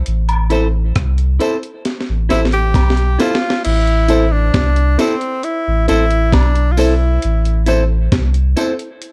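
A clear tenor saxophone with light vibrato carries the melody from 2.3 s in this laid-back, meditative roots reggae excerpt in A minor at 67 BPM, riding over a deep, round sub bass and a gritty, compressed sampler-style breakbeat kit with a thumpy kick and a drum fill from 1.9 to 3.6 s, while a clean, picked semi-hollow electric guitar supplies accompaniment and a worn, woody, slightly detuned upright piano adds background stabs, both bathed in plate reverb, and distant woodblock and tambourine echo through a large room.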